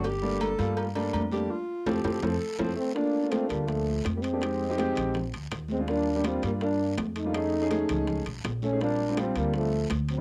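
Afro-Cuban jazz with a driving, sultry mood, heard as a short cut from a longer piece recorded at home on cassette with light reverb. A breathy tenor saxophone opens as a soloist, its subtone carrying light vibrato and scooped notes, while a concert grand piano supplies warm, deep-bottomed accompaniment and an up-front upright bass gives a woody, dark pizzicato foundation. The percussion is dense: ringing agogo bells and timbales sit close and dry, a raspy guiro scrapes nearby, and high-tuned congas, cowbell and bongos struck with hard hands stay in the background. Around 1.5 seconds the band hits an accent and a drum fill follows, leading to a breathy, whispered trombone that enters at 2.8 seconds to take the melody with a soft attack and an intimate, up-front presence. From there the harmony moves through rich jazz changes, from a rootless Gm9 toward an altered F7 and a closing Bb6, as the saxophone continues in a second line alongside the trombone.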